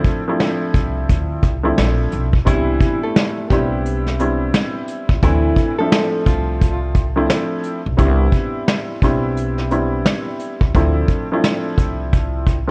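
A worn, warbling cassette sound with drifting pitch and little reverb wraps this dry, confident boom-bap hip-hop excerpt at 87 BPM, swung in 4/4, alternating between Dm9 and Cmaj9. A dark, slightly detuned upright piano with audible action noise sits up front beside a vintage brush kit with 12-bit sampler grit, a tight kick and a rolled-off top, while a woody, thumpy pizzicato upright bass enters at 0.7 seconds. From 2.5 to 6.8 seconds a small, fingerpicked nylon-string guitar carries the melody through a filtered digital delay.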